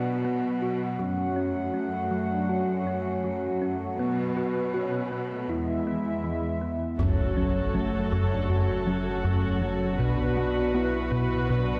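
Over a straight 4/4 pulse, this tense, relentless cinematic cue, cut from a longer hybrid orchestral and electronic film score, opens with a hollow, flute-like soft pad up front, a distant French horn section holding dark chords in the background, a clear, intense cello section on the bass line, and a round, tine-like thumb-piano-style synth pluck spinning mellow arpeggios through chorus and tape echo. At 7.0 s the texture thickens as a lush, bowed viola section adds accompaniment, a rubbery, bouncy square bass drives a riff over a deep sine sub bass, a very quiet taiko ensemble strikes with hard sticks, and an electronic impact sounds in the background. A wet scoring-stage reverb places the ensemble further back in the room, lending the cue a roomy, tense weight.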